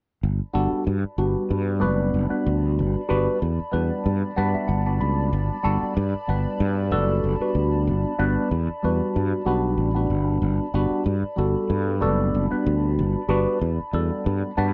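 A growly, punchy fretless electric bass opens this funky, soaring jazz excerpt at 94 BPM with a swung feel in G major. A clean tine electric piano with phaser follows at 0.5 seconds, playing up front with fills around 4.1 and 14.3 seconds, and a dark, detuned analog pad with chorus and phaser adds moody sustained chords from 0.9 seconds. The passage begins on a Gmaj9 chord, captured as a dry, close recording in a 1970s studio style.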